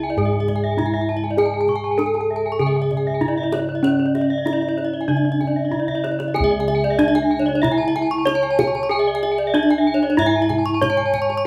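A bronze metallophone carries the melody up front, its horn-mallet strokes ringing bright and mid-forward in this hypnotic, shimmering stretch of Balinese gamelan in C# pelog, cut from a longer piece. Two more bronze metallophones spin arpeggios an octave higher, one airy and the other close-miked and full. Their paired tuning gives each of the three instruments a beating shimmer. Beneath them, bossed gongs hold the bass with a round, dry tone, while the kendang adds tight acoustic percussion from 0.2 seconds and plays a drum fill from 5.7 to 6.4 seconds that leads into the second section. The ensemble plays live in one room at 95 BPM in 4/4, with a loose, uneven pulse and a moderate large-studio reverb.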